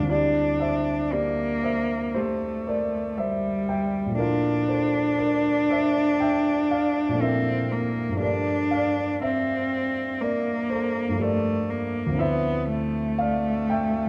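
A single bowed cello sings the melody up front, its rich, focused tone carrying vibrato and a smooth top as it moves between G3 and D4 across the full 14.1 seconds. Beneath it, a dark, mellow baby grand piano supplies accompaniment with a vintage character and long sustain, drifting through Cadd9/D, Bbmaj7#11, Gm9 and Dm9. This mysterious, hazy impressionist duo unfolds at 60 BPM in 4/4 with a rubato feel, tuned to A4 = 442 Hz and set in a moderate scoring-stage reverb, as though lifted from a longer piece.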